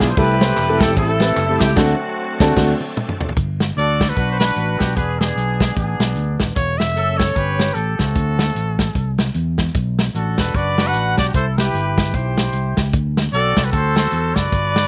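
A tight, vintage horn section carries the melody through this jubilant, uplifting uptempo gospel excerpt at 150 BPM with a swung feel, joined from 3.8 seconds by a clear solo trumpet with vibrato, over a punchy fingered electric bass and an up-front acoustic drum kit with crash, ride and toms, while an intimate baby grand piano with audible action noise, a gritty overdriven tonewheel organ through a rotary speaker, and background tambourine and handclaps sound only in the opening moments, before a band accent and drum fill lead into the Gmaj7 change at 3.4 seconds, all in a dry mix.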